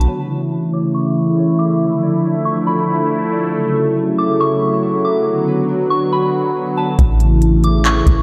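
A half-time 4/4 groove at 139 BPM in A major drives this blissful, dreamy atmospheric cloud-rap hip hop excerpt: a knocking trap kit with crisp hats and handclaps and a deep, round, sine-toned 808 bass sound briefly at the start, drop away, then return up front at 7.0 s, while an airy, detuned sawtooth pad with chorus and sidechain pumping sustains chords through a filter sweep from 0.1 to 7.0 s, a pure FM synth bell carries the melody through phaser and analog delay, and a ringing, fingerpicked concert harp plays arpeggios in the background, the whole mix steeped in a lush hall reverb.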